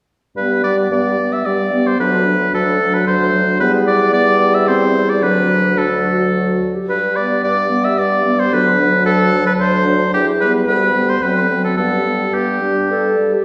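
At 0.4 seconds a wind quintet enters together in a spirited, cheerful classical-period movement in a rubato three-beat metre, cut from a longer piece. A clear oboe sits up front with a second line, while a warm, soft-attacked clarinet and a mellow French horn with light vibrato and a smooth top fill in the accompaniment. A vintage-toned bassoon with its own light vibrato anchors the bass, all set in the lush reverb of a church or concert hall until the oboe drops out at 13.2 seconds and the others close at 13.4.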